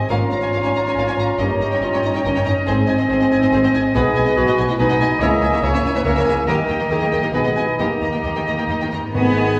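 A rich, lush violin section carries the melody of this dramatic, restless romantic movement for symphony orchestra, its smooth, even vibrato sounding distant in the hall. Set in Ab major at a fast 131-144 BPM in 3/4 with a rubato feel, this short passage from a longer piece is supported by a clear, intense second violin section, rich violas, focused cellos with a smooth top, and expressive double basses, all bowed with vibrato. Woodwinds add second lines throughout: a bright oboe, an airy flute section, and a mellow clarinet with a soft attack, while a distant, roomy bassoon provides accompaniment in the background. A very quiet French horn section holds warm sustained chords, a bright concert harp rings out fingerpicked arpeggios, and very quiet timpani struck with hard mallets sound close and dry at 0.1 and again from 7.8 seconds. The harmony moves restlessly from Bbm7/Ab through Eb7/G and G#m/B toward D#, all bathed in the wet reverb of a recital hall.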